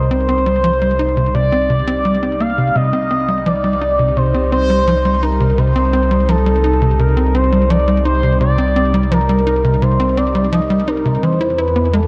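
Hypnotic and expansive, this short stretch of ambient, sequencer-driven space music moves in a straight, steady 4/4 and is cut from a longer piece. A tight, punchy sequencer bass drives a plucked, filtered riff throughout, its decaying sawtooth and square tones softened by lush chorus and delay. Beneath it, a deep, round sine sub bass holds the low end, while a swirling, detuned analog pad fades in over the full 12.1 seconds, sustaining phased, chorused chords that slowly evolve. Up front, an expressive synth lead sings a smooth, dark melody with vibrato and a moving notch, set in analog chorus and delay. The harmony rests on a C minor add-nine chord before shifting to an E power chord at 11.2 seconds, all within a moderate plate reverb and a cassette-tape sound carrying lossy compression artefacts.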